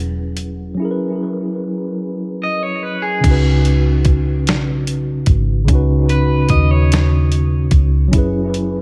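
An echo-heavy mix, with light reverb and a digital ambience, frames this short cut from a slow six-eight R&B piece with a sultry, late-night mood. A mellow tine electric piano sits up front through its built-in speakers, its clean chords carrying tape echo over suspended ninth harmonies that move from F#9sus4 to C#9sus4 at 3.2 seconds. Beneath it, a vintage fingered electric bass adds a dark, round, foam-muted punch. A dusty, sampler-style drum kit, compressed and gritty, brings a thumpy kick, a medium-tuned snare, hi-hat and crash cymbal close to the listener. At 2.4 seconds an electric guitar at the edge of break-up enters as a picked, twangy second line, also trailing tape echo, and the harmony returns to F#9sus4 at 8.1 seconds just before the cut ends.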